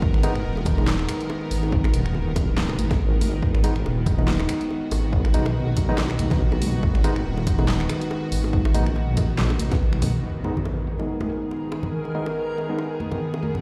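A deep, wobbling bass sits up front in this brooding, meditative slice of deep dubstep, its dark, saturated sawtooth-and-sine tone thickened by chorus as it holds a G# minor center until 10.2 seconds. At 141 BPM in a half-time feel with a light swing on the sixteenths, a punchy, overdriven electronic kick drives the drop alongside a deep house kit whose fat snare, finger snaps, handclaps, hi-hat and crash are dulled by low-pass filtering. Bright, close bongos and congas sit in the background with dub echo, while a barky, gritty tine electric piano fires overdriven stabs that trail off in echo. Beneath it all, a tense, string-like drone holds sustained chords with vibrato and its own reverb for the full length. An electronic impact lands at 10.2 seconds as the bass drops out, and from 11.0 seconds a reversed, granular texture swells in dreamily on a single high note, all set in the large, roomy reverb of a big sound system in a bare space.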